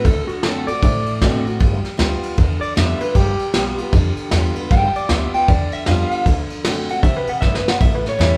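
Swung eighths in 4/4 drive this rowdy, upbeat rockabilly excerpt, with a brushed vintage drum kit sitting up front (tight kick, dark ride cymbal and a medium-tuned snare) and a woody, thumpy pizzicato upright bass on gut strings. A twangy, slightly broken-up electric guitar through a small old amp with spring reverb plays a clean fingered solo across the whole 8.4 seconds, while a bright, full-bodied picked dreadnought acoustic plays the D7, G7 and A7 changes underneath. The band plays live in one large studio room, and a short drum fill at 7.4 seconds kicks toward the final A7.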